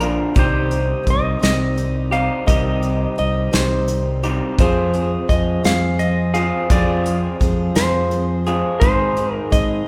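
Folk rock with a heartland rock lean, this short cut from a longer piece moves at a slow 6/8 in F minor with a dusty, wistful mood, passing through C minor and F minor chords and reaching A-flat near 8.8 seconds. A dark, clean lap steel guitar carries the melody with slide, while an electric guitar through a small old amp plays a fingered, slightly broken-up riff with a lo-fi, compressed edge. A picked dreadnought acoustic guitar sits in the background with a full-bodied tone, and a reed electric piano adds very quiet, reedy accompaniment that sounds worn and slightly out of tune, shimmering with fast tremolo through its built-in speakers. Underneath, a fingered electric bass is round and up front, and a soft brush drum kit with a punchy kick, medium-tuned snare and hi-hat sits close in a small-room sound. The parts play together throughout, framed by the moderate reverb of a church or concert hall.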